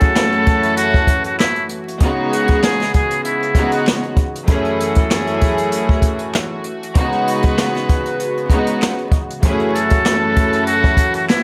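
A breathy, buzzy trumpet with a metal mute carries the melody up front, playing from the start until 3.8 seconds and returning at 9.7 seconds in this dark, moody boom-bap hip-hop excerpt at 97 BPM in F# dorian, swung over F#m7 and C#7sus4 chords. A jazz kit played with brushes, with a boomy kick, sits close alongside floating, sul tasto strings bathed in plate reverb, while a lush, chorused sawtooth pad and mellow, tight horn stabs with octave doubling stay in the background. Very quiet finger snaps enter at 0.2 seconds, and a layer of vinyl crackle gives the sound a vintage grain.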